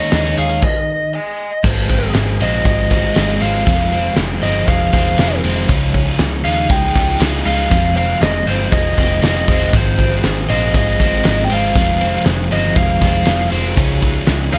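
A dry slice of jangly indie pop in Ab major at 119 BPM, bright and nostalgic, where a dark, lo-fi overdriven lead guitar with digital delay carries the melody over a warm crunchy rhythm guitar, a twangy twelve-string electric shimmering with harmonic tremolo in the background, a round, foam-muted picked bass, an up-front loose drum kit with a fat snare, boomy kick and dark cymbals, and very quiet hollow group handclaps, all pausing in a brief stop from 0.6 to 1.6 seconds before riding a cycle of Ab6, Fm7 and Dbadd9 chords.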